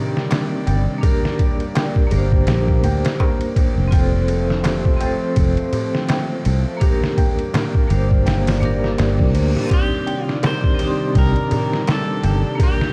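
A round, foam-muted fingered electric bass sits up front in this smoky, cinematic trip hop fragment at 83 BPM, riding a gritty, pitched-down sampler-style drum kit with a thumpy kick, while a ringing vibraphone struck with hard mallets adds tremolo, tape echo and vintage sampler grit over a warbling, detuned tape-like pad, soft felt-muted upright piano arpeggios and a crisp metal-shell darbuka tucked in the background, before a faint reverse cymbal at 9.1 s leads into a twangy, slightly broken-up electric guitar melody with dub echo at 9.7 s, all within a dark, dry production dusted with vinyl crackle.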